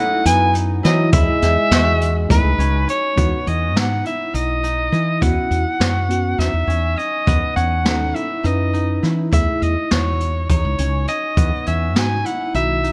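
A vibrato-laden soprano saxophone with scooped notes carries the melody up front in this bright, intricate progressive instrumental excerpt at 205 BPM in 7/8 and E major, over a ringing, fingerpicked concert harp with delay, a round, punchy fretless bass, brushed drums with a boomy kick and high-tuned snare, a clean tine electric piano in the background from 1.4 seconds, and a distant, mellow trombone with delay that stops at 2.8 seconds, set in light reverb.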